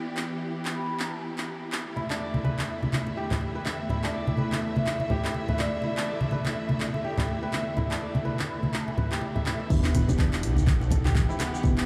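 A dreamy mix soaked in reverb, with a small-room ambience, sets the tone for this warm, earthy afro house excerpt at 124 BPM in 4/4 with a swung 16th-note feel. From the start, a clear, lush symphonic string section holds distant bowed chords over Em and then Dsus2/E, pumping with sidechain. A layered electronic deep house kit of crash cymbal, handclaps, hi-hat, shaker and toms sits beneath the strings, while an airy bamboo bass bansuri with vibrato carries the melody in the background through analog delay. At 2.0 seconds, a crisp, ringing fingerpicked kora adds arpeggios with delay and sidechain pumping, and close, dry congas played with soft hands join it. At 9.7 seconds the drop lands on Em7 with an impact. It brings a deep electronic kick, a round, mellow analog bass, dark chorused chord stabs with a filter sweep, a very quiet medium-tuned djembe and a faint sub drop.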